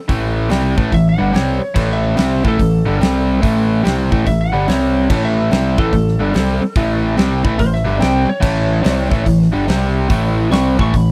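Blues rock power trio with a southern rock edge, this driving, swaggering cut moves at 144 BPM in 4/4 with a swung eighth-note feel, built on a crunchy, double-tracked overdriven guitar riff sitting up front over growling, overdriven picked bass and a huge arena drum kit with a punchy kick, medium-tuned snare and bright cymbals. From 0.9 seconds a lightly driven, twangy lead guitar adds a compressed, slightly broken-up solo line high above, while the chords move between A5, C5 and A. The sound is a dry, close 1970s-style studio recording with little reverb, cut from a longer piece.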